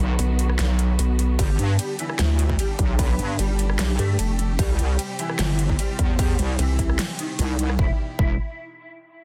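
Aggressive and heavy, this half-time wobble dubstep drop is cut from a longer piece, with two up-front wobble basses, one a saturated, detuned square-and-sine unison and the other a nasal, dark formant-filtered sweep, both with chorus and overdrive, churning under a lush bowed string section whose sustained chords are low-passed and sidechain-pumped. A big-room dance kit with a huge snare and metallic hats drives from 0.2 seconds, while an overdriven electronic kick with a punchy attack and a dark, slightly broken-up fingered electric guitar melody soaked in ensemble chorus and dub echo both arrive at 1.4 seconds. The dense, heavily limited master sits in digital ambience as the chords move from B through G7 and C to a final E minor.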